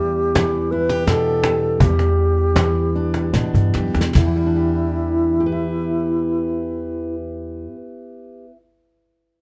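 In a straight 3/4 pulse between 72 and 85 BPM, this wistful, haunting acoustic folk fragment in E minor, cut from a longer piece, opens on an Em7 chord and slows down through its opening bars. A fingerpicked steel-string dreadnought guitar, warm and up front, carries the accompaniment across its full length. A close-miked, airy alto flute with a reedy, wooden-headed tone sings the melody with vibrato and tongued notes. A soft brush kit, with a punchy kick and medium-tuned snare, shares the small room with a snappy, up-front cajon played by soft hands; a drum fill closes their passage before both drop away around 4.3 seconds. A woody, dark pizzicato upright bass joins at 1.8 seconds and stays low until 7.2 seconds, after which the guitar finishes alone. Light reverb frames a dusky production.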